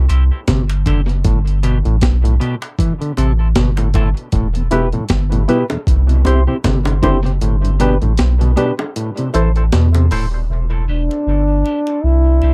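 A deep, round sine sub bass opens this hypnotic, heavy dub reggae excerpt, quickly joined by a gritty, compressed sampler-style breakbeat kit with a thumpy kick, tight high-tuned bongos in the background, a dark, clean fingered electric guitar, a very quiet, lightly overdriven tonewheel organ on slow rotary, and stringy overdriven clav arpeggios through a combo amp, with hollow, chorused organ stabs arriving at 4.7 s, filter sweeps and dub echo colouring several parts, the kick dropping out at 7.4 s, and a breathy, whispered trombone taking an intimate solo melody from 10.9 s, all captured in a dry, close 1970s-style studio sound.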